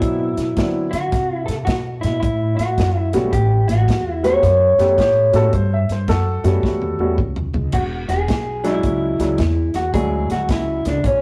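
Electric blues shuffle with a laid-back, gritty feel, where a dark, slightly broken-up electric guitar through a small old amp carries the melody with spring reverb over woody upright piano accompaniment, thumpy gut-string upright bass and a dry soul drum kit with dark cymbals, while a second upright piano line surfaces from 5.0 to 7.2 seconds and a drum fill arrives at 6.6 seconds, all captured in a rough rehearsal-room recording with tube saturation and a stone room's reverb.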